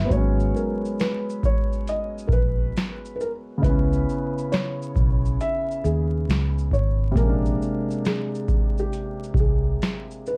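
Dark, hazy production with light reverb and a bed of vinyl crackle frames this melancholic lo-fi hip hop fragment, swung on the sixteenths and moving through G#m11, C#m7 and A#9. A soft, thick-felt upright piano carries the melody through a low-pass filter over a second, woody upright piano whose accompanying chords pass through cassette tape and a low-pass filter of their own, while a round, foam-muted electric bass holds the low end until 9.8 s. Up front, a booming analog drum machine sets a deep kick, crisp snare and metallic hi-hats beside finger snaps and shaker.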